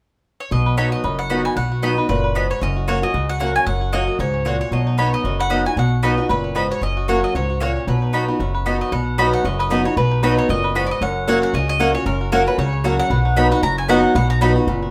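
Joyful and driving, this bluegrass passage is cut from a longer piece and rolls along with a lightly swung eighth-note feel. A bright, double-strung mandolin carries the melody from 0.4 s, joined by a twangy, percussive banjo picked with fingerpicks that shares the lead in a lower register. A second mandolin adds woody stabs alongside. Up front sits an old ladder-braced acoustic guitar, picked with a boxy, warm character as accompaniment, while a thumpy, dark upright bass on gut strings anchors the bottom. The harmony moves back and forth between two chords, and the tune shifts into a new section at 8.9 s, with a moderate studio reverb giving the band a sense of shared space.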